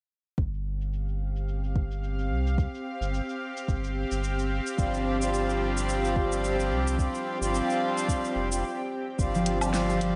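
Mystical and warm, this organic downtempo fragment moves at 109 BPM in 4/4 with a gentle 16th-note swing, cut from a longer piece and resting on a G7sus4 chord. A round, sine-like sub bass enters at 0.4 s alongside a soft electronic kick and a layered deep house kit of filtered hi-hat, shaker, woodblock and a fat snare, the drums set in a small room ambience, while a filter sweep runs across the bass. From 1.4 s a tense, string-like drone with a detuned sawtooth edge, a noise layer and vibrato sustains chords up front, breathing with sidechain pumping. A close-miked, reedy pedal harmonium joins at 4.8 s with a full, breathing tone and a diffuse delay, and after a brief break from 8.6 s to 9.2 s a mellow, thumb-plucked concert harp adds ringing arpeggios at 9.3 s. The whole mix is dreamy and soaked in lush hall reverb, its top end softly rolled off.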